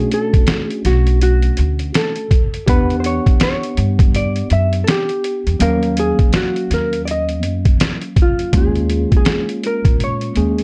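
A swung sixteenth-note groove in four sets the pace, carried by a gritty, compressed sampler-style trip hop kit that lands at 0.1 seconds with a thumpy kick, medium-tuned snare and hi-hat, pitched down and sitting up front with a tape-warm grit. This is a smoky, cool slice of jazz-hop cut from a longer piece, framed in a dark, softly reverberant production. A pizzicato upright bass joins at 0.8 seconds, woody and steel-strung, prominent in the mix beneath the beat. A worn, slightly out-of-tune tine electric piano comps through lush ninth chords, its tone lightly overdriven as if through built-in speakers. Over it, a clean, fingered hollow-body jazz guitar plays the melody in a dusky register, bathed in plate reverb. At 8.5 seconds the harmony moves from the drifting Bm9, Em9 and Ebm9 changes to a suspended Eb9sus4, opening a brief new section.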